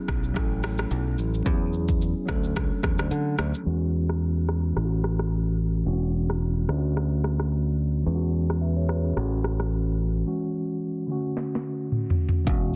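A growly, punchy fingered electric bass sits up front in this romantic, sunny afrobeats passage at 109 BPM in E mixolydian, cut from a longer piece, with a gentle 16th-note swing. A mellow, clean tine electric piano, heard as if through built-in speakers, cycles through A6, E69 and Dmaj7 chords, while an electronic afro-pop kit adds a deep kick, a sharp, softly clipped snare, smooth hats, rim clicks, shaker and toms. A filter sweep runs from 3.7 seconds as the second section begins, and a drum fill arrives at 11.4 seconds, all within a dense, heavily limited mix with digital ambience.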